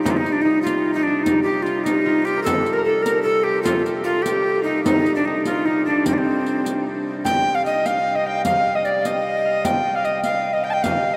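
Drenched in a huge, wet reverb that sets it in a vast, echoing space, this mysterious, ancient-sounding medieval dance in 6/8 features an airy, up-front tenor recorder carrying the melody with vibrato and tongued chiff, a fingerpicked concert harp ringing out a second line in the background over the dark, reedy drone of a pedal harmonium, and a deep, distant frame drum alongside the bright jingles of a close, dry riq, before the music moves into a new section at 7.3 s in this fragment cut from a longer piece.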